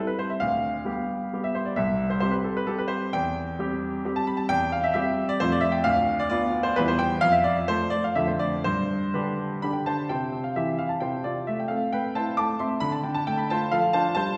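A clear, up-front solo grand piano opens this elegant, playful classical-period sonatina in C major at 132 BPM in 3/4, shaping its rubato phrases across a range from C2 to D6 inside a wet recital-hall reverb. It moves from G7/D through F, Em and G to a fresh passage at 10.1 seconds built on C, Am and Dm, before the cut from the longer piece ends at 14.4 seconds.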